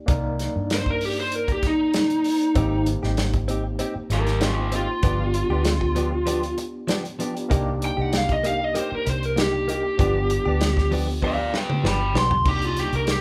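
A barky, gritty tine electric piano with medium tremolo opens this smoky, soulful straight-eighth soul blues in C minor at 97 BPM, joined at once by a round, foam-muted fingered bass and a tight, up-front soul drum kit with dark cymbals, before a dark, lo-fi lead guitar through a small cranked amp takes an overdriven solo from 0.7 seconds, a bright, compressed clean guitar adds picked stabs from 2.6 seconds over the Cm7, Abmaj7 and G7 changes, and a drum fill arrives at 11.2 seconds in this live-room take with light reverb.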